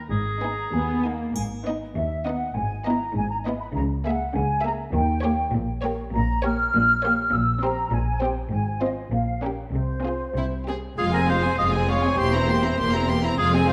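Bowed violin sections open this playful, mischievous film cue at 100 BPM in 2/4: a clear, intense violin melody rides over an expressive second violin line and smooth, distant violas, joined by a roomy solo oboe, lush cellos and up-front double basses, a mellow flute section carrying a second line until 10.7 s, and a brief bright triangle at 1.4 s, as the magical G# minor setting turns to F minor at 6.1 s within a dark production and moderate scoring-stage reverb.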